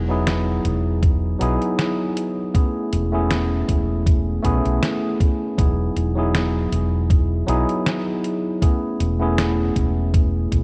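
A thumpy electronic kick drum sits up front in this nostalgic, woozy vaporwave excerpt, arriving at 1.0 seconds with sampler-style 12-bit grit, tape-warmed tone and studio reverb, and it sounds re-recorded in a small room. Just before it, at 0.3 seconds, a detuned 8-bit drum machine brings in hi-hat and a medium-tuned snare, softer in the mix and carrying the same grit and reverb. From the opening, a clean tine electric piano plays the accompaniment through its built-in speakers, coloured by subtle chorus, 12-bit sampler grit and tape echo. Beneath it, a dark, round fretless electric bass with a woody, hollow-body character stays low and close, given a subtle chorus of its own. The harmony drifts between Emaj9 and Amaj7/E over a lightly swung 4/4 groove, and the whole excerpt carries a light reverb and a cassette-tape sheen.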